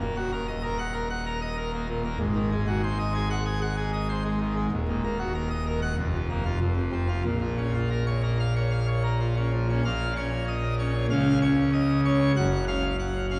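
A full pipe organ opens on an E-flat minor chord, its mixtures ringing out in a stormy, majestic classical toccata set in B-flat minor at 95 BPM in a straight 4/4. The organ plays solo and up front, its brilliant, baroque voicing spanning Eb1 to Gb5, with a crisp chiff at the start of its pipes. The harmony moves through Ab7 and back to E-flat minor before passing over bare fifths to settle on B-flat minor at 7.2 seconds. A second section begins at 9.8 seconds, turning toward D-flat and arriving on a G-flat fifth near the close. A long church reverb surrounds the instrument, the listener seems placed further back in the room, and a faint mains hum sits beneath the sound of this passage cut from a longer piece.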